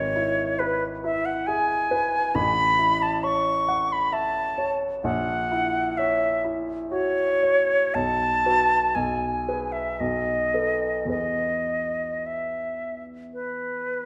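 Romantic classical music in E major and 3/4, this tender, lyrical 14.1-second excerpt from a longer piece moves with a rubato pulse between 48 and 70 BPM, with an airy concert flute singing the melody up front with vibrato and tongued notes over a warm, polished grand piano accompaniment, both set in a wet recital hall as the harmony travels through F#7/A# and B7 to settle on E.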